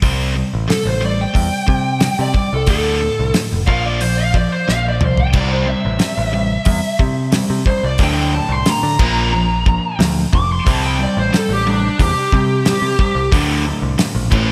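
Classic rock at 90 BPM with a swaggering, brooding mood: a dark, distorted bluesy lead guitar solos up front from 0.7 s over a biting overdriven guitar riff in the background, a bright picked electric bass and a damped 70s drum kit with a fat snare, tight kick and dark cymbals that plays a fill at 4.7 s, before a raw garage guitar with overdrive and slapback echo joins the riff at 5.3 s, all set in concert hall reverb for a big arena sound.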